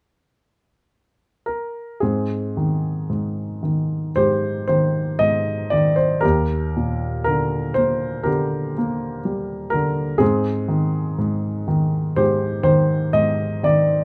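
Classical solo piano in a calm, tender, lyrical vein, moving at a slow 56-62 BPM in 4/4 with a flexible, rubato feel and tuned slightly high to A4 = 441 Hz. A dark, mellow grand piano with a vintage character and short sustain enters at 1.5 seconds and sits up front, ranging from Eb2 to Eb5 as the harmony settles on Abmaj7, shifts to Ebmaj7 at 6.2 seconds and returns to Abmaj7. Close, detailed microphones and light reverb give the smooth tone an intimate presence in this brief passage cut from a longer piece.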